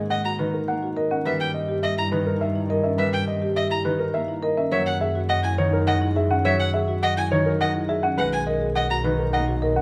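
Closely miked with light reverb, this propulsive, hypnotic excerpt of minimalist classical pattern music moves at 104 BPM in 3/4, with a dark grand piano carrying the melody, its action noise audible, over woody marimba arpeggios, ringing fingerpicked harp accompaniment, distant vibrato-laden violin arpeggios and a bowed double bass line with expressive portamento, as the harmony shifts from G#7sus2 through F#13 to Bmaj7 at 8.2 seconds.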